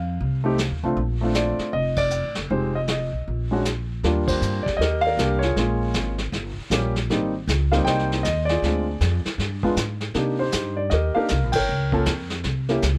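A polished, present concert grand piano carries the melody up front in this relaxed, sophisticated jazz trio excerpt, its deep bass and short sustain giving the swinging 4/4 line a crisp, elegant shape over rich seventh-chord harmony. A woody, pizzicato upright bass with steel strings sits close beside it, while a vintage brush kit with dark cymbals, a medium-tuned snare, a punchy kick and a rolled-off top adds a warm small-room texture. The whole trio hits shared accents at 1.9, 4.2 and 11.5 seconds, all captured by close, detailed microphones with little reverb.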